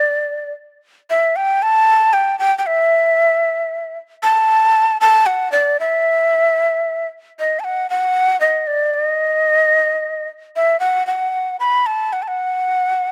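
Recorded dry and outdoors, this short festive Andean folk excerpt sits close and earthy, at 76 BPM in a straight 6/8. A single large wooden quena plays alone throughout, up front, breathy and mellow, with a crisp, chiffy attack, rolled-off highs, vibrato and a somewhat unsteady delivery as it moves between D5 and B5. Its opening phrase gives way to a new passage at 7.4 seconds before the cut at 13.1 seconds.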